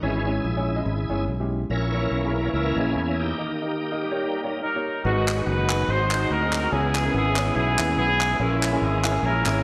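A shouting tonewheel organ, bright through its slow rotary speaker and chorus vibrato, takes a solo over the first 5.1 seconds of this fervent, solemn uptempo gospel excerpt at 143 BPM with a swung feel, backed throughout by a dark, woody upright piano with audible action noise and a round, up-front fingered electric bass. A brief break at 3.4 seconds brings a piano fill before a mellow, softly attacked horn section enters with the melody at 4.6 seconds, settling into G# minor. Crisp, close handclaps join at 5.3 seconds in a moderate stage reverb.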